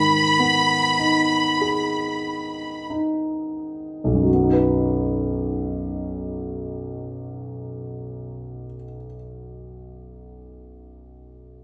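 Pop in B major at a very slow 42-52 BPM with a tender, hopeful mood, this excerpt opens with a bright, lush symphonic violin section singing the melody with intense vibrato until 2.9 s over a warm, deep-bassed concert grand piano that continues alone to 11.6 s, the tempo easing until G#m gives way to B at 4.3 s, all set in a wet studio reverb as if the players shared one room.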